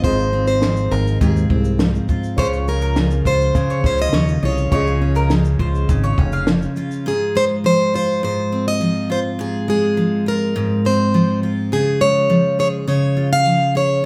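This easy-going, carefree acoustic pop opens with a jumbo plugged-in steel-string acoustic guitar picking the melody over a bright, full-bodied picked acoustic guitar, a growly fingered electric bass and a compact cocktail kit of dark, punchy kick, high-tuned snare and shaker, with a woody upright piano sitting in the background. A double-strung mandolin adds bright arpeggios from 2.4 s, and near 7 s the piano, bass and drums drop away, leaving the two guitars to carry the rest of this excerpt from a longer piece. A wet studio reverb places the listener further back in the room.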